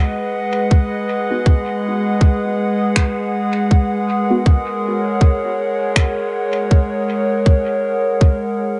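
Ambient dub at 80 BPM with a swung sixteenth feel, meditative and spacious, this excerpt rests on a warbling, nostalgic pad of sustained chords that sits up front throughout, its slow attack and long release softened by chorus and its own reverb over a B/G# chord. A tight, tape-toned electronic kick drum anchors the groove up front from 0.7 s, while a muted, dark filtered dub chord stab with a moving notch, phaser and dub echo flickers in the background from 1.3 s. Produced electronic finger snaps, also dub-echoed and re-recorded in a small room, arrive at 3.0 s, and the whole mix sits in a moderate spring reverb with a rolled-off top end.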